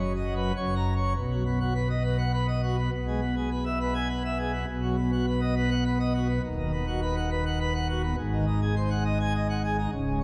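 A solo pipe organ on full plenum, its mixtures ringing bright in a romantic voicing and placed up front, plays a jubilant classical toccata passage in triple metre that moves from a brief opening into a longer second section at 1.2 seconds, all bathed in a long, wet church reverb in this brilliant fragment cut from a longer piece.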